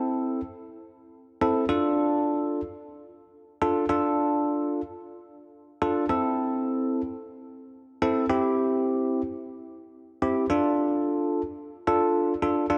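In a straight, steady 4/4 pulse, this melancholic, nocturnal pop fragment, cut from a longer piece, rests entirely on a solo tine electric piano heard from 0.0 to 12.8 seconds. The instrument has a bell-like, bright and clean tone, placed up front and direct in the mix, with a subtle chorus adding gentle shimmer. Its lines stay in the middle register, from C4 to A4. The harmony moves from Am to Dm, returns to Am and lifts to C, then a new passage begins at 10.5 seconds on Dm. A moderate, lush hall reverb surrounds the playing, lending the small arrangement a spacious, late-night atmosphere.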